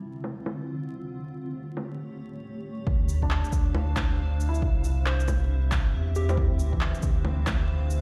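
Rainy and wistful, this future garage excerpt moves at 137 BPM in D minor with a swung sixteenth-note feel, cut from a longer piece. A blurred, evolving granular cloud pad holds sustained chords from the start, with a filter sweep moving across it through the first 2.9 seconds, while overdriven electronic bongos, shaker and handclaps enter under low-pass filtering. At 2.9 seconds the music drops into its main section as a punchy, overdriven layered kick and a deep, rumbling detuned saw bass arrive up front, the bass and pad pumping against the sidechain. A mellow, felt-muted upright piano adds quiet accompaniment with tape echo, and a round, warbling FM lead with chorus and vibrato briefly carries a short melody around 5.1 seconds. The chords cycle through Dm7, A7 and C, and the mix sits in a large studio reverb, as if played on a big sound system in a bare room, with vinyl crackle over the top.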